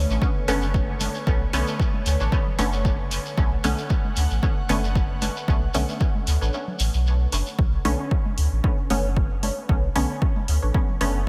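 A swung 114 BPM dub techno groove in 4/4 and B minor, meditative and hazy, rides a punchy overdriven kick that falls away from 6.5 to 7.6 seconds, a gritty hi-hat, a round sine sub bass, muted detuned chord stabs soaked in dub echo, a very quiet stab riff, tape-toned congas in the background, a grainy shekere and an airy, breathy phased pad holding a Bm9 chord until 7.6 seconds, all in light reverb in this cut from a longer piece.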